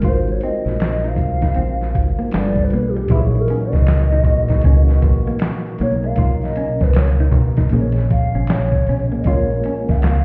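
R&B with a neo-soul lean, this smooth, late-night excerpt moves at 78 BPM in 4/4 with a swung sixteenth-note feel in Bb phrygian, drifting through lush chords like Ab13, Gb13/Bb and Bmaj9 before settling on Bbm7. A hollow, woody clarinet-like synth lead carries the melody, playing a soft solo through the opening section, its sustained tones shaded with chorus, vibrato and a slapback echo. Beneath it, a mellow tine electric piano supplies clean accompaniment, while an electric guitar through a small old amp adds a slightly broken-up, picked second line. The deep dub fingered bass sits up front, round and punchy, alongside a gritty, pitched-down boom bap sampler-style kit with a thumpy kick, medium-tuned snare, hi-hat and handclaps, with very quiet maracas and finger snaps tucked beneath. At 3.1 seconds a fat tonewheel organ enters in the background with sustained chords, lightly overdriven, with key click and a slow rotary speaker. 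The whole mix sounds as if heard muffled through a wall, wrapped in stone room reverb that gives it a hazy, distant character.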